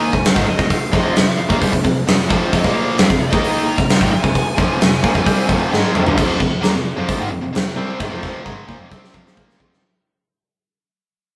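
A rough rehearsal-room recording with moderate room ambience opens this heavy, menacing hard rock excerpt in F minor, moving at 132 BPM in a straight 4/4. A big acoustic drum kit sits up front, with a punchy kick, a medium-tuned snare, toms, hi-hat and bright cymbals ringing in a stone-like room. Two picked electric guitars drive the riff from the start: one overdriven and bright, the other a tight, distorted part tucked further back. A dark, woody bowed cello carries the bass line in the background, a single distant player with vibrato. A warm, overdriven lead guitar through a small cranked amp plays the melody behind the band until 5.7 seconds, when a drum fill leads into a new section at 6.2 seconds that fades out with another fill to the end at 9.8 seconds.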